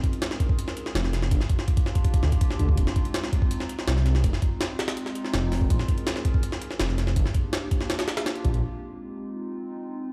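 Raw and frenetic, this drum and bass excerpt in jungle style runs at 164 BPM in F minor, cut from a longer piece and opening straight into a drop that lasts until 8.6 seconds. A gritty, sampler-style jungle kit sits up front with a thumpy kick, a high-tuned snare and hi-hat, its pitched-up, compressed sound carrying a tape-like grain and a small room reverb. From 0.9 seconds a thick, detuned saw bass growls in the low register, menacing and saturated, its beating tone up front with a fast attack and sustained notes. Behind them a lo-fi, warbling pad holds dark, nostalgic chords with a slow attack and long release, coloured by chorus and its own reverb, cycling through Bbm7, Gm7 and Fm7. The drums and bass stop at 8.6 seconds, leaving the pad alone on an Fm7 chord until 10.1 seconds, with the whole mix sounding as if played on a big sound system in a bare room.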